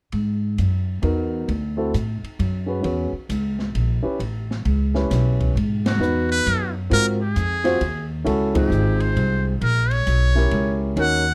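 A swinging pulse in three drives this late-night small-group jazz excerpt, carried from the opening moment by a woody, pizzicato upright bass with steel strings up front and an acoustic drum kit of hi-hat, kick, ride and snare that sits lower in the mix, its dark cymbals, boomy kick and rolled-off top giving the kit a smooth, small-room character. A warm grand piano soon joins as accompaniment, moving through G#m7, D, E6 and A9 before the harmony turns to G#m7, G#13, C#maj9 and A#dim7 in the second half. The full band hits accents at 5.8 and 8.5 seconds, and just after the first of these a trumpet with a metal mute takes the melody at 5.9 seconds, its buzzy, thin, brilliant tone placed up front in a jazz solo style. Close, detailed microphones and little reverb keep the sound intimate and dry, and the passage is cut from a longer piece.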